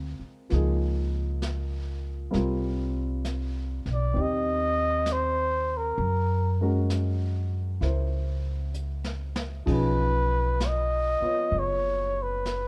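A breathy, whispered trumpet carries the melody from 3.9 seconds, its dark tone, light vibrato and scooped notes sitting close and intimate over this romantic, late-night jazz ballad excerpt at a slow 65 BPM swing in 4/4. A baby grand piano comps with a natural tone, a woody, thumpy pizzicato upright bass on gut strings holds the low end up front, and a vintage brush kit with dark cymbals and a punchy kick joins at 0.5 seconds, adding a fill at 8.8 seconds. Light reverb frames the moody harmony as it drifts from Dm7b5 through Db69, Cm7 and Gb7 to Badd9.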